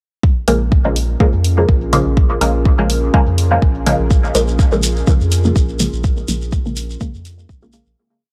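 A filtered dub chord stab sits up front from 0.5 seconds, its muted, detuned sawtooth plucks moving one Bbm7 shape in parallel through phaser and dub echo over a deep four-on-the-floor kick, dark programmed hats and a round, soft sub bass pumping in dotted rhythm. This short, hypnotic dub techno piece in Bb minor runs at 124 BPM with a slight swing, as a moody analog pad with a slow attack, chorus and phaser enters beneath from 1.1 seconds. A grainy acoustic shekere adds hand-played sixteenths from 4.1 seconds while the whole groove fades out from 5.4 seconds, all captured in a dry, gritty hardware sound with digital ambience.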